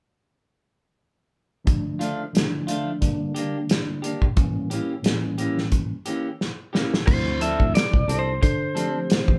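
Up-front soul drums with dark cymbals, a medium-tuned snare and a tight kick drive this brooding, mournful straight-eighth soul blues at 89 BPM, cut from a longer piece, as a mellow tine electric piano and bright, twangy clean guitar stabs move through Dm, Gm and A7b9; after a drum fill, a slightly broken-up lead guitar melody and a round, punchy fingered bass enter at 7.1 seconds over Dm7, with the band playing live in one room under moderate reverb.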